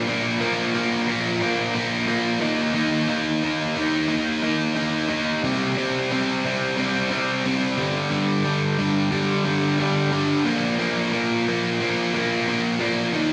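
A biting, overdriven electric guitar opens this short rock cut alone, picked and double-tracked so it sits up front with a thick, doubled presence. The mood is confident and driving, moving in a straight 4/4 feel as the guitar ranges from G2 up to Eb4. Its tone carries both a slapback echo and a tape echo. The progression steps through Bb5, Eb5, C5 and G5 before landing back on Bb5 at 10.5 seconds. A wet recital-hall reverb and a big arena sound open up the space around the lone guitar, which plays throughout the 13.3 seconds of this section lifted from a longer piece.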